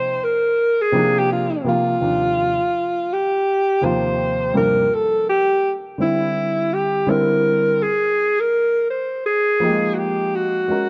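Smooth and relaxed, this excerpt of jazzy hip hop in Eb major sways at 83 BPM with a swung sixteenth feel, as a breathy alto saxophone carries the melody with vibrato and scooped notes from a roomy distance, taking a solo turn over the opening 2.0 seconds, while a dark, woody upright piano with audible action noise plays intimate accompaniment through chords like Bbadd9, Ebmaj9 and Fm11, all set in a moderate plate reverb and a dark, warm production.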